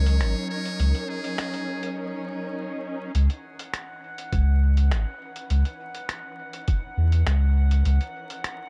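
A round, up-front sine sub bass anchors this deep, hazy ambient dub excerpt at 102 BPM in C# dorian, beneath lush, distant bowed strings, a brief buzzy metal-muted trumpet line with dub echo that ends at 2.0 s, muffled tape-warm finger snaps and hi-hat, a glassy drifting harmonics texture with chorus from 3.4 s, a thumpy electronic kick between 4.3 and 6.8 s, and a bed of vinyl crackle.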